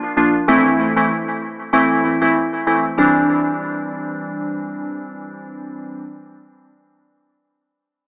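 Glassy, sine-toned digital keys enter at 0.2 s with a fast attack and decaying notes, carrying a sunny, joyful afrobeats accompaniment with a light 16th-note swing, a filter sweep, chorus and analog delay, shifting from Am to Cadd9 at 3.0 s and sitting up front in an echo-heavy, AM radio-style mix with moderate spring reverb in this short cut from a longer piece.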